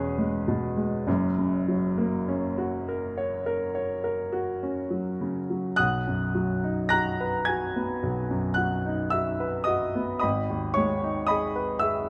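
A smooth, vintage-toned baby grand piano opens alone on a C#m7/E chord, then moves to F#, in this brief passage cut from a longer romantic nocturne in B major. Played with free rubato at a slow 49-57 BPM in 4/4, the nostalgic, dreamy piece shifts into a new section at 5.8 seconds, settling on B before turning to G#m at 10.2 seconds, with the piano reaching from a deep E1 up to A#6. Close, detailed miking keeps the instrument up front, while a moderate stone-room reverb lends it a soft sense of space.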